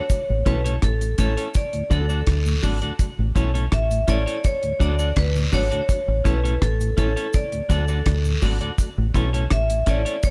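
A straight 83 BPM roots reggae groove in A major, this sunny fragment from a longer piece is anchored up front by a dry, tight-kicked drum kit playing hi-hat, kick and rim click, and a round, foam-muted fingered bass. A bright, twangy guitar at the edge of break-up and a ringing, metallic vibraphone melody played with hard mallets both carry tape echo. A mellow tonewheel organ with key click, chorus vibrato, slow rotary speaker, tube saturation and dub echo sits in the background, and cabasa and guiro add quiet live-room percussion. The harmony alternates between A and D throughout, in a close, dry sound.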